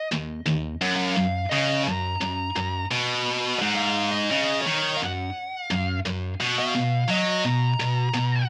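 Dark and heavy, this short metal fragment moves at 86 BPM in a straight 4/4, tuned slightly flat to A4 = 438 Hz, with a bright, double-tracked high-gain rhythm guitar up front grinding out a low riff between Eb2 and F#3 over power chords on Gb5 and later B5 at 6.4 seconds. Above it, a warm, distorted lead guitar picks a melody from Db5 to Bb5, sitting lower in the mix than the riff. The rough home-demo sound carries a moderate small-room reverb.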